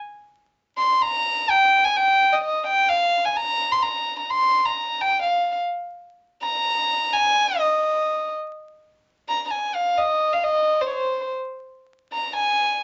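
Proud and romantic, this short passage of Mexican folk music moves in a straight 3/4 at 127 BPM, its tuning sitting slightly above concert pitch at A4 = 441 Hz. A single bowed violin carries the whole piece as a solo voice, entering at 0.8 s and singing through to the end at 12.8 s within a range from C5 to C6. Its tone is pure and floating, with a soft attack, an airy quality to the bow and a slightly boxy body, and it sits up front in the mix. The melodic material is stated once and then returned to at 8.6 s, as if the phrase is being sung again. A wet small-room reverb gives the violin a close, intimate space, while vinyl crackle and a rolled-off top end lend the recording the dusty character of an old record. This is a brief excerpt cut from a longer piece.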